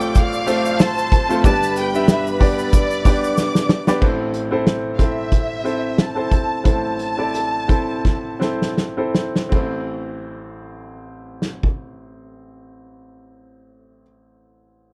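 A dry, close studio sound frames this earnest, bittersweet piano-driven pop excerpt in A minor, moving in a lightly swung 4/4 at 79-93 BPM and slowing through its middle stretch. A clear, polished baby grand carries the accompaniment throughout, and a lush, smooth, distant violin section sings the melody with vibrato and a slapback echo. A focused symphonic violin section adds a second line, and a grainy, mellow tube shaker sits in the background until 4.0 seconds. A loose indie drum kit with a punchy kick, dark cymbals and a pumping room stands up front, marking the turns with fills and stopping at 11.8 seconds.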